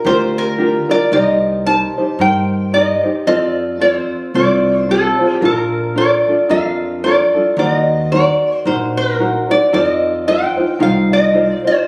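A lap resonator guitar carries the melody up front, its metallic, nasal slide tone picked with fingerpicks, in this dreamy, relaxed Hawaiian excerpt that is cut from a longer piece. It moves at 112 BPM in 4/4 with a gentle swing on the eighth notes, and the tuning sits slightly under standard pitch at A4 = 439 Hz. A thumb-plucked tenor ukulele, light and also up front, supplies accompaniment under it throughout the 11.9 seconds. A pizzicato upright bass on steel strings adds a woody, growly low end with a bright edge and drops out at 11.5 seconds. The chords drift from Gm7 through Cm7, F, Bbmaj7 and Ebm6 to F7. The sound carries a moderate recital hall reverb and has the roomy character of a phone recording made in the space.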